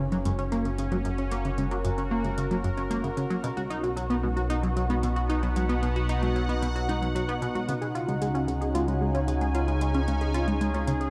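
A straight 4/4 pulse at 113 BPM drives this hypnotic, mysterious excerpt of sequencer-driven ambient space music, tuned to A4 = 436 Hz: a tight, nasal sequenced synth riff with analog delay and a bright, resonant pad of slow-attack sustained chords, both chorused and bathed in shimmer reverb, sit up front over a round, deep analog bass, while a booming analog drum machine with metallic hi-hats and toms, re-recorded in a large room and echoed by analog delay, enters at 0.1 s lower in the echo-heavy mix as the harmony moves from F# to B and then C#sus2.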